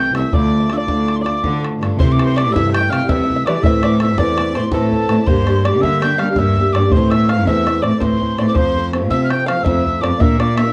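A dark production with moderate studio reverb frames this spirited, driving Celtic slip jig at 110 BPM in 9/8, where a hollow, airy wooden whistle with chiff, vibrato, slapback echo and plate reverb carries the melody over a reedy accordion and a plunky, twangy open-back banjo on second lines, a boxy fingerpicked archtop guitar with finger squeak, an up-front bowed cello bass with a soft sul tasto tone, and a boomy, saturated bodhran entering at 0.1 s, all moving from Dm to Bb in a passage cut from a longer piece.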